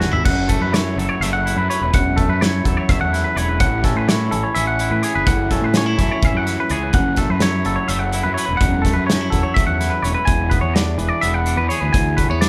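A drum fill on a loose, up-front indie kit with dark cymbals and a punchy kick opens this bright, playful math rock and midwest emo excerpt at 252 BPM in eighths in 7/8, where two clean, twangy electric guitars, one picked and compressed for accompaniment and one fingered in arpeggios, ride over a round, overdriven fuzz bass through F#m7, A69 and E7 changes inside a moderate recital hall reverb.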